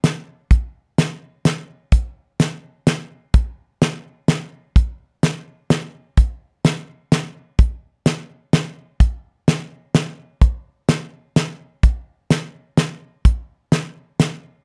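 A dark production with light reverb frames this heartfelt, nostalgic country fragment in 3/4 at 127 BPM, where a dry, up-front, damped 70s acoustic drum kit with a fat snare, tight kick and hi-hat plays alone from 0.0 to 14.3 seconds.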